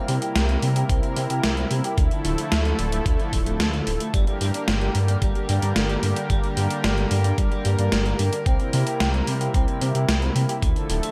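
Set in a light reverb, this short synthwave excerpt sounds nostalgic and driving, moving at 111 BPM in a straight 4/4 in G dorian. A smooth, detuned sawtooth pad with a soft attack holds sustained chords through the piece, carrying chorus and sidechain pumping. Beneath it, a deep, rumbling detuned saw bass with a fast attack and beating tone also pumps with the sidechain. The drum machine sits up front with a sampler-style hi-hat and an overdriven, gated-reverb snare that sounds re-recorded in a small room, and a tape-warm, knocking electronic kick joins at 0.9 s. In the background, a compressed, picked electric guitar at the edge of break-up plays a riff with subtle chorus and delay. The harmony moves from C7 to Dmadd9, settles on Gm, and returns to C7 at 8.5 s.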